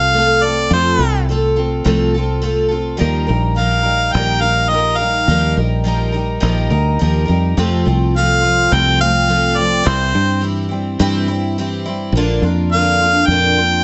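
This folk rock and heartland rock passage, cut from a longer piece, has a warm, nostalgic mood and a straight, steady 4/4 feel. A clear harmonica carries the melody throughout, sitting up front with a light vibrato, a smooth top and a pop-style character, bathed in plate reverb. Beneath it, a picked twelve-string acoustic guitar fills out the accompaniment with a full-bodied dreadnought tone, its octave-doubled strings shimmering in their own plate reverb. A fingered electric bass, foam-muted yet bright and punchy, stays direct and close in the mix. The harmony moves from F through Ebadd9 and back to F, then on to C and Bb. The overall sound is lightly reverberant with a gently rounded high end.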